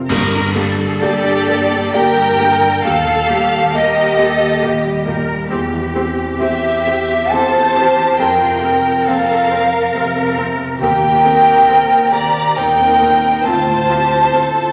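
A lush, reverberant scoring-stage sound with rounded, softened highs frames this longing, sorrowful cinematic cue for orchestra, moving in a rubato three-time and cut from a longer piece. It opens with an accent at 0.1 seconds, where dark clash cymbals with concert bass drum and a very quiet, articulate timpani note on hard mallets mark the downbeat before falling away by 1.9 seconds. An intimate grand piano with audible action noise and deep bass carries the accompaniment alongside a background viola section touched with portamento, while close, expressive cellos and woody double basses anchor the low end. At 1.0 seconds the violins take up a smooth, vibrato-rich melody, joined by a second violin line with soft attacks and a pure, hollow flute that sits forward in the mix. The harmony drifts through Gm, Eb, C/E, Fsus4 and Cm7/Eb before settling on Dm7, keeping the mood suspended and yearning.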